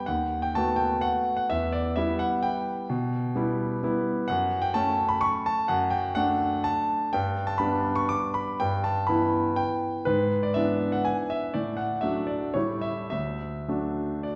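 Elegant and sparkling, this classical piano waltz in 3/4 moves with rubato between 105 and 135 BPM, a short cut from a longer piece. A clear concert grand plays solo throughout its 14.4 seconds, natural in tone with a deep bass, spanning D2 to D6. Its harmony drifts from B7/D# and Em through F#m and G before settling on D at 13.1 seconds, all heard from further back in a recital hall with a wet, 1.8-second reverb.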